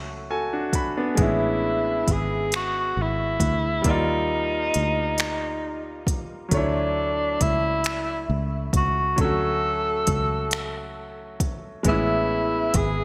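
Slow six-eight R&B with a tender, sensual mood, this short excerpt cut from a longer piece opens on a brilliant concert grand piano fill that gives way at 1.2 seconds to a breathy tenor saxophone carrying the melody. The saxophone sits up front with a mellow, whispered subtone, soft attacks, scooped notes and vibrato in an intimate vintage jazz style, trailed by a digital delay. Beneath it the piano keeps up its accompaniment with natural deep bass, while a fingered electric bass adds a round, foam-muted low end. An electronic drum kit, placed up front and re-recorded in a large room, brings finger snaps, smooth hi-hat and a soft, tape-warm kick from 0.7 seconds. Major-ninth chords move through the passage, all set in a moderate plate reverb with a bright 1980s-style digital production.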